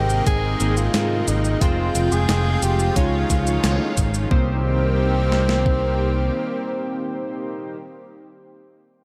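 A moody, nocturnal synthwave excerpt in which a breathy tenor saxophone with light vibrato and tape echo carries the melody over a lush, detuned unison pad that pumps with the sidechain, glossy chorused polysynth stabs with 12-bit grit and analog delay, a growly, punchy picked electric bass up front, and two tape-toned 12-bit drum machine parts, one with cabasa, hi-hat and snare until 4.3 seconds and one with kick and snare until 5.8 seconds, all soaked in a dreamy plate reverb, with a band accent at 3.6 seconds.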